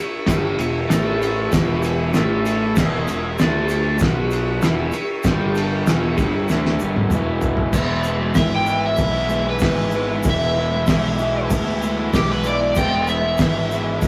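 A rough rehearsal-room recording in a wet small room sets up this raw, rowdy garage rock snippet at 96 BPM in E mixolydian, where buzzy vintage combo organ chords hum in the background with light vibrato, a crunchy double-tracked overdriven guitar riff pushes up front over a punchy fuzz bass, and a cloth-damped, thuddy drum kit with a fat snare, tight kick and muffled dark cymbals rolls through a fill around 6.5 seconds, all dusted by a grainy egg shaker, before a bright overdriven slide guitar, played with fingerpicks, enters at 8.4 seconds with a melody.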